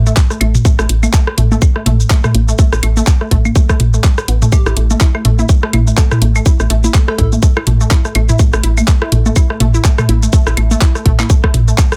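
Cool and sparse, this minimal techno excerpt moves at 124 BPM in 4/4 with a 16th-note swing, built on an up-front, tight electronic kick with overdrive and a round, woody FM bass pumping under sidechain beside a juicy, squelchy blip pluck riff coloured by chorus and tape echo. An overdriven garage kit adds handclaps, hi-hat and shaker, while a booming, tape-warm analog drum machine supplies claves, congas, rim click and toms with soft clipping on its snare, all set in a small, dry room. From 4.5 to 7.3 seconds a catchy, detuned unison lead with a moving notch sits in the background under tape echo, and the dense, heavily limited master keeps the whole groove tight and loud.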